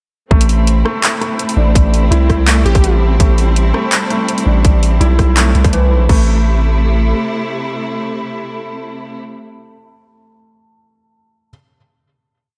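A sparse half-time drum and bass beat at 166 BPM drives this spacious, cinematic A minor piece, with an overdriven, tight electronic kick up front and an overdriven kit of bright hi-hats, rim clicks, handclaps and crash cymbal, while a deep, mellow 808-style sine bass plays chopped phrases beneath. A biting, distant string section holds lush sustained chords with sidechain pumping, and a soft, felt-muted upright piano repeats an intimate 16-step arpeggio through analog delay, its action noise audible. A catchy, detuned sawtooth lead flickers briefly in the background at 2.7 seconds through a diffuse ambient delay, the drums drop out at 6.2 seconds for a final chord, and the piano carries on alone until 11.5 seconds, all bathed in a dreamy hall reverb.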